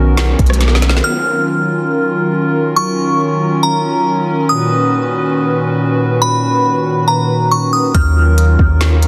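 Spacious and hazy, this short cut from a longer atmospheric cloud-rap track moves in an unhurried half-time feel. A hollow, flute-like pad holds sustained chords throughout, sitting up front with chorus and a sidechain pumping that makes it breathe with the beat, while a riser hovers faintly in the background during the opening second. A smooth R&B kit with a soft kick, woody snare and silky hats plays briefly at the start alongside the round, sine-like 808-style bass, the kit ending with a drum fill at 0.6 seconds; both then drop out until they return together at 7.9 seconds. From 1.0 seconds a glassy, crystalline FM bell carries the melody high above, its bright, decaying notes trailing through chorus and tape echo. The chords drift between Bmaj9 and Ebm9, and the dense, heavily limited mix keeps the sound close and dry.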